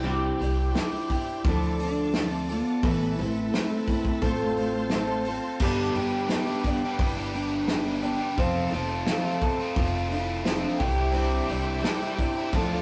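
This rough rehearsal-room recording sits in a stone room with a moderate reverb, giving a jangly, open-road folk rock and heartland rock piece in C major at a straight 87 BPM in 4/4, cut from a longer performance. Up front, a shimmering, full-bodied twelve-string acoustic guitar picks out octave-doubled accompaniment over a thumpy, woody upright bass played pizzicato on steel strings. A natural country drum kit, also up front, keeps time with a punchy kick, a medium-tuned snare, hi-hat and crash cymbal. A dark, clean lap steel carries the melody with slide and volume swells, while a shouting tonewheel organ holds sustained chords in the background through a slow rotary speaker, its key click and light overdrive audible. At 5.6 seconds, as the harmony moves from Cadd9, Dm, Amadd9 and F/A on to G and F before returning to Cadd9, a biting, double-tracked overdriven electric guitar enters with a picked riff.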